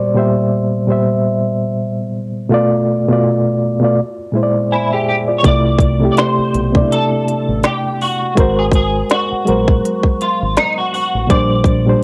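Mellow and nostalgic, this short lo-fi hip hop excerpt moves at 82 BPM in 4/4 with a gentle 16th-note swing. A reedy, worn electric piano opens alone and sits up front, slightly out of tune and lightly overdriven, its fast tremolo and cassette-tape haze softened further by a low-pass filter as it drifts through jazzy chords like Bb69, Bm7b5 and Bb7#11. At 4.7 seconds a clean, picked electric guitar slips in with a quieter melody, thickened by ensemble chorus and filtered to a mellow glow. The drums and a round, dark fingered dub bass arrive together at 5.4 seconds, the kit electronic yet organic, with a tight kick, woody snare, crisp hats and finger snaps, overdriven and dubbed to cassette so it sounds re-recorded in a small room. Over the C69 and Ab9 changes that follow, light reverb and a digital ambience wrap the whole in a homespun, tape-worn intimacy.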